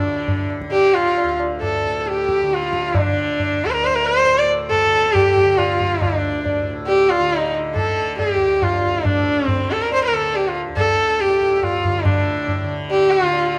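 Introspective and full of longing, this short Hindustani classical passage is cut from a longer piece and moves in a seven-beat cycle that gradually speeds up. A bowed sarangi carries the melody up front, its clear, focused tone touched with a slightly boxy character, light vibrato and gliding portamento, while its sympathetic strings add resonance. Beneath it, a softly plucked tanpura sustains a low drone from the opening moment, its buzzing, shimmering sound sitting well back in the mix. The high-tuned tabla enters at 0.3 seconds with a ringing, close presence. A moderate recital-hall reverb gives the ensemble a sense of space, and the music shifts into a new section at 12.1 seconds before the passage ends.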